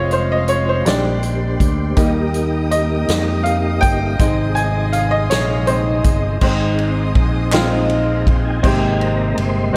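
Slow, uplifting and reverent gospel in 6/8, cut from a longer piece: a bright, woody upright piano leads up front until 6.4 seconds over a punchy, amped fingered electric bass and a swinging big-band drum kit with dark cymbals, while a smooth tonewheel organ with key click, chorus vibrato and a slow rotary speaker holds chords alongside a rich, bowed string section in the background, a hollow group handclap sounds briefly at 7.5 seconds, and the organ takes a short solo from 8.6 seconds, all set in a small room with light reverb.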